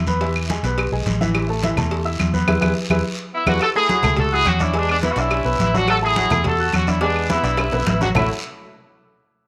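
Salsa at a brisk 211 BPM in A major, this sunny, danceable excerpt cuts between E and A chords with touches of A6 and E7. A dark, round, foam-muted electric bass and a clear, polished baby grand piano carry the groove, while bright congas, high-tuned, compressed cowbell and bongos and woody claves sit in the background, and a raspy guiro plays in a live room. A band accent and drum fill lead into a tight, punchy, up-front horn section melody at 3.3 seconds, another fill arrives at 7.0 seconds, and a moderate echo chamber reverb adds studio ambience.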